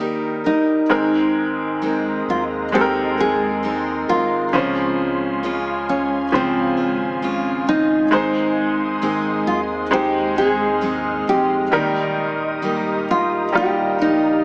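A small-speaker sound bathed in moderate concert hall reverb frames this heartfelt, hopeful pop excerpt in Ab major at a slow 66 BPM, where an up-front fingerpicked nylon-string guitar carries the melody over a bright, woody upright piano with audible action noise and a picked full-bodied steel-string guitar playing arpeggios, joined at 0.9 seconds by a deep, round sub bass and at 1.7 seconds by an ethereal, warbling pad with ensemble chorus sustaining chords in the background through Abadd9, Dbmaj7 and Ab before settling on Eb.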